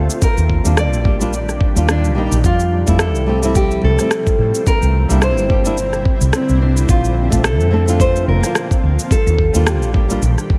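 Light reverb and a digital ambience give this relaxed, sunny sunset chillout fragment, cut from a longer piece, an open, airy glow. At 108 BPM in 4/4 with a gentle swing on the 16ths, it sits in F major and moves through Ebmaj7, Fmaj7, C9 and Bbmaj9 before returning to Ebmaj7 near 9.1 seconds. A thumb-plucked nylon-string guitar with fresh strings carries the classical-flavoured melody through a digital delay, while a thumb-plucked flamenco guitar, also treated with delay, adds warm accompaniment below it. Up front, a woody fretless electric bass sounds dark, growly and round. A compressed, gritty electronic kick drum re-recorded in a large room lands with a thumpy punch from 0.2 seconds, just after a produced electronic cabasa and rim click enter at 0.1 seconds. In the background, a shimmering, ethereal ambient pad with octave-up shimmer, a granular texture, chorus and its own reverb holds sustained chords with a slow attack and long release.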